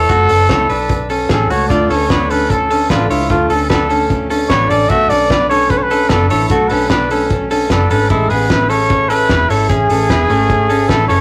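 Jangly indie pop with a nostalgic, youthful mood, cut from a longer piece and moving through F#m7, Dm, Bm7 and Amaj7. An up-front, clear trumpet carries the melody with light vibrato over twangy, compressed arpeggios from a bright, direct-recorded clean electric guitar, a dark, round, foam-muted fingered bass, and a muffled, lo-fi drum kit with a fat snare and tight kick. A picked steel-string acoustic guitar joins in the background at 1.7 s, and the take has the rough, saturated feel of a rehearsal-room recording in moderate studio ambience.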